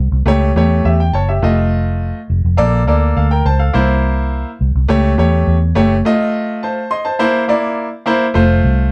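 Joyful and warm, this short cut from a longer piece is uptempo soul in a 1960s style, set in a straight 4/4 groove. A vintage muted electric bass, played with the fingers, opens the clip at 0.0 seconds, its dark, round, foam-muted tone carrying a touch of tube saturation and sitting up front. A bright grand piano joins at 0.3 seconds as accompaniment, its brilliant, natural sound with short sustain also placed close to the listener. The harmony cycles through A7 over C#, F7, Bbmaj7 and C7 before landing on F at 8.4 seconds. A moderate studio reverb gives the pair a modest sense of room, and both parts play through to the end at 8.9 seconds.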